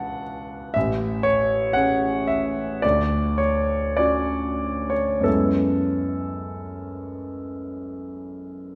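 Heard from further back in a recital hall with a wet, lingering reverb, this short cut from a longer impressionist solo piano piece has a wistful, hazy mood. A clear grand piano, close and intimate with audible action noise, plays alone in F# minor at a slow, rubato 44-61 BPM in 4/4, ranging from A1 to A5. Its harmonies drift from E9sus4/C# through Amaj7 and Dmaj7, arriving on F#m11 at 5.3 seconds.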